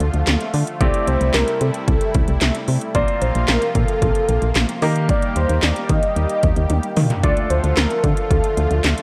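Driving straight 4/4 at 112 BPM, this nocturnal synth-pop excerpt in D minor sets punchy 80s electronic drums with gated reverb on the snare and toms, metallic hats and a fill at 6.7 seconds under a round, dark FM bass, while a velvety, detuned sawtooth lead with chorus, analog delay and vibrato carries the melody over a thick, nasal unison pad and a brilliant concert grand piano in the background, moving through Dm, C6, Bbsus2 and Eb before returning to Dm.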